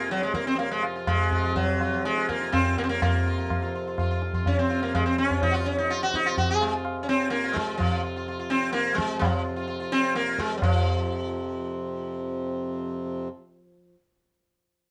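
Straight 4/4 at 126 BPM, gradually speeding up until 12.5 s, drives this introspective, solemn Hindustani classical excerpt in raga bhairavi on F, tuned to A4 = 442 Hz, where a bright, buzzing sitar with shimmering sympathetic strings carries the melody up front, a reedy, breathing hand-pumped harmonium holds the drone beneath it, and high-tuned, ringing tabla, heard close, keeps time until 10.8 s, within a moderate studio reverb.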